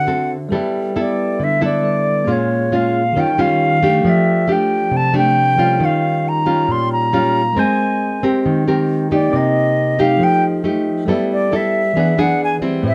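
A pure, straight-toned concert flute takes a tongued solo from 0.5 seconds in this relaxed, sophisticated bossa nova excerpt at 136 BPM, sitting up front beside a dark, full-bodied fingerpicked nylon-string guitar while a bright, bell-like tine electric piano adds clean accompaniment over rich extended chords such as G69, Eb9 and Abmaj9, all in light reverb.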